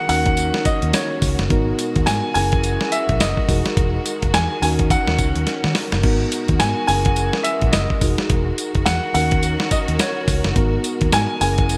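Punchy and slick, this new jack swing R&B cut has a clear concert grand piano carrying the melody over mellow tine electric piano accompaniment, lush bowed strings with vibrato, and a round, foam-muted fingered electric bass. Up front sits a gritty, compressed sampler-style drum kit with thumpy kick, snare, hi-hat, tambourine, crash and gated reverb, which breaks into a fill at 5.5 seconds, all wrapped in bright 1980s-style digital production with light ambience.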